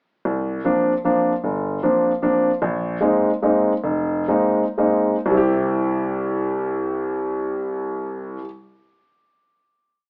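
Spiritual and searching in mood, this brief jazz piece is played by a solo concert grand piano in a swung 3/4 and in C mixolydian, with a tempo that ranges from 107 to 152 BPM. The piano is warm and intimate, with deep bass, long sustain and audible action noise, and it sits up front. Its stride bass figures and close voicings span from F1 to G4. The harmony moves from C9sus4 to Bb9sus4 at 2.6 seconds, where the tempo begins slowing down, before resolving to a plain C chord at 5.3 seconds that rings until about 8.5 seconds. A moderate club reverb surrounds the instrument, and the recording as a whole has an AM radio sound.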